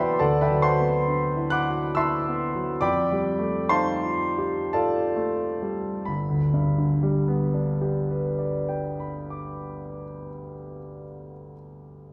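In a rubato 3/4 that slows down over its first 6.1 seconds, this luminous, serene passage of impressionist classical solo piano floats on extended harmonies, moving from D13 to F9 before settling onto G at 6.1 seconds as a new section begins. The clear concert grand plays alone throughout, up front with a deep bass, natural tone and long sustain, spanning G1 to F#6. Heard from further back in a concert hall, it is wrapped in a wet reverb with a 2.0-second decay, and the fragment is cut from a longer piece.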